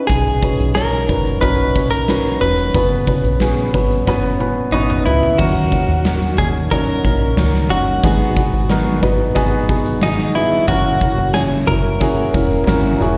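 Piano-driven pop cut from a longer piece, anthemic and warm at 91 BPM in a straight 4/4, where a clean, compressed electric guitar carries the melody up front over a dark, woody upright piano, both bathed in plate reverb and slapback echo, while a round, foam-muted fingered bass and a huge arena drum kit with bright cymbals and a punchy kick drive underneath. A drum fill from 4.1 seconds, joined by a piano fill at 4.4 seconds, leads into the second section at 5.4 seconds, where a fresh-stringed, fingerpicked steel-string acoustic guitar joins with a riff in the background, all heard live through a venue's PA in a moderate club reverb.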